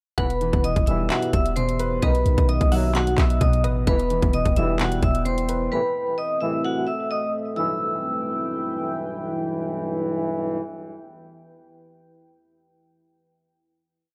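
An echo-heavy mix surrounds this melancholic yet hard-hitting trap instrumental at 130 BPM in a half-time feel, set in E harmonic minor and moving from Em through B and Am. A hard-mallet vibraphone carries the looping melody up front, metallic and ringing with a medium motor vibrato, doubled in octaves and softened by a low-pass filter and analog delay. In the background, a glassy, crystalline wavetable pluck adds a sparse counter-melody. A dark, mellow concert grand plays a pedal-note arpeggio in eighths, while a tight, distant brass section punctuates with short classical-style stabs. Underneath, a clean, boomy 808-style bass holds long sub-bass notes that follow the kick with pitch slides, and the electronic trap kit drives a bouncy beat of hard-clipped kick, handclaps and sixteenth-note hi-hats until 5.6 seconds. From 1.3 seconds a deep, moody detuned sawtooth pad fades in with a slow attack and chorus, then sustains with the brass through the final Em chord from 7.6 seconds.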